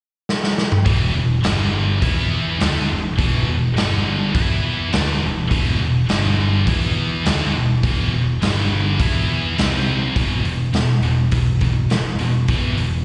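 Heard as a live gig through the venue's PA, with recital hall reverb and a muffled top end, this heavy, aggressive hard rock excerpt opens with a drum fill from the raw garage kit at 0.3 seconds: a gritty, saturated sound with a punchy kick and medium-tuned snare sitting up front. At 0.9 seconds a scooped, high-gain, double-tracked guitar joins with a bright, distorted riff that alternates between E5 and G5 power chords, while a round, dark hollow-body bass sits beneath it. A C5 chord briefly breaks the pattern before a new section starts at 10.2 seconds.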